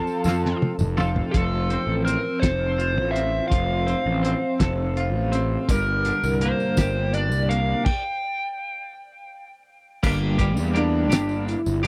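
Mysterious and trippy, this slow psychedelic rock fragment in 6/8 at 55 BPM (dotted quarters) moves from F to G minor over a dry, close 1970s-style studio sound. A biting lead guitar carries the melody through wah, overdrive and tape echo. A double-tracked twelve-string electric guitar with tremolo plays a bright, twangy riff. Mellow French horns hold sustained chords with light vibrato, above a punchy, fuzz-driven picked bass. A cloth-damped, thuddy drum kit with dark cymbals and a fat snare opens with a fill at 0.3 s, while a jingly tambourine sits in the background. After a stop at 7.9 s, the French horn section takes a solo from 10.0 s.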